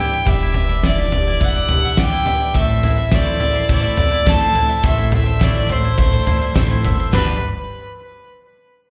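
A dark, sul tasto fiddle with light vibrato and analog delay carries the melody over a bright picked steel-string acoustic guitar and double-strung mandolin arpeggios, both touched with slapback echo, in this nostalgic indie folk piece at 105 BPM in 4/4, with a woody pizzicato upright bass and a loose drum kit with a punchy kick and fat snare joining at 0.3 seconds, and a very quiet, floating string section adding soft-attack sustained chords from 2.6 seconds as the harmony moves from Em7 to Am and then G, all heard through a live club's PA and reverb.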